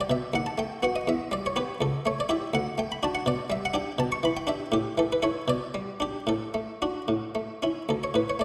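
Classical, baroque-style suite movement in a radiant, flowing D major, this short extract for solo buff-stop harpsichord moves at 73-83 BPM in a rubato 6/8, its muted, lute-like Italian-style pluck placed close and up front against a reverberant stage ambience, as the harmony passes from B7/D# through Em, A7/C# and G/B to settle on D5 at 7.9 seconds.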